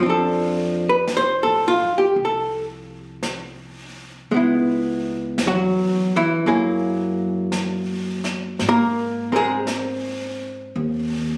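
A dark, clean archtop guitar opens this late-night, romantic jazz ballad up front, picked and compressed with a hollow-body tone, while the upright bass and brush kit sound together from the very first moment. The tempo is a slow 56 BPM in 4/4 with a swing feel on the eighth notes, and the guitar carries the accompaniment across a register from Fb3 to C5. Beneath it, the pizzicato upright bass sits low and woody, its steel strings giving a thumpy bottom between C2 and A2, while the acoustic brush kit adds brushed snare, a medium-tuned snare and hi-hat with a small-room feel. The harmony moves from F6 to Dbm7 at 4.3 seconds, then through Gb9 to Abadd9, keeping a tender, unhurried glow. Light reverb and a phone-in-the-room quality lend the whole fragment, cut from a longer piece and lasting 11.4 seconds, an intimate, candid atmosphere.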